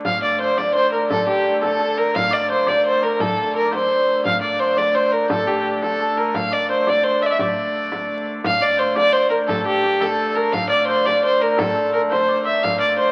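Heard through the crackle of a very old 78 rpm record and a wet studio reverb, this driving, mysterious medieval dance in 6/8, cut from a longer piece, sets a single dark, woody fiddle with light vibrato up front on the melody over a shimmering, ringing hammered dulcimer second line, a nasal, reedy hurdy-gurdy drone and a small, bright frame drum played with soft hands.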